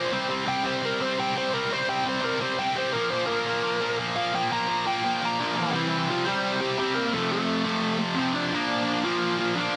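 A dense, heavily limited modern master with moderate studio reverb carries this energetic, rowdy punk excerpt in C mixolydian at 171 BPM in a straight 4/4. Up front, a tight, bright, double-tracked rhythm guitar picks a distorted riff throughout, while a dark, bluesy overdriven lead guitar plays a solo over the first 5.7 seconds. From there the chords move through C, F and Bb as the lead carries the melody to the end at 9.8 seconds.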